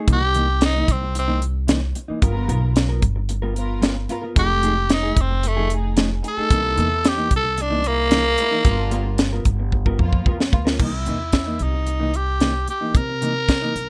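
Swaggering and rollicking, this straight-eighth soul blues fragment puts a raspy, growling tenor saxophone solo up front over a tight, dry funk drum kit with bright cymbals and a high-tuned snare, plus a woody, thumpy pizzicato upright bass on gut strings. A mellow, clean electric guitar adds compressed, fingered stabs touched with vibrato, while a dark, lush bowed string section holds smooth sustained chords from 2.2 to 10.7 seconds over altered dominant harmony. A drum fill at 9.7 seconds leads into a new section, all in a close, nearly reverb-free sound.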